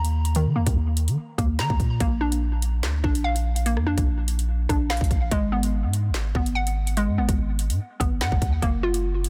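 A half-time drill groove at 145 BPM in Eb minor sets an ominous, cold mood in this short cut from a longer hip hop piece. Up-front electronic drums bring a hard-clipped kick, a woody snare, metallic hats, handclaps and rim clicks. A deep, dark sine 808 bass sustains long, decaying notes, while a hollow, bouncy, detuned square pluck with ring modulation, a filter sweep, chorus and tape echo spins arpeggios over Eb5, Bb, Abm7 and Gbmaj7, all in a dense, heavily limited modern master with digital ambience.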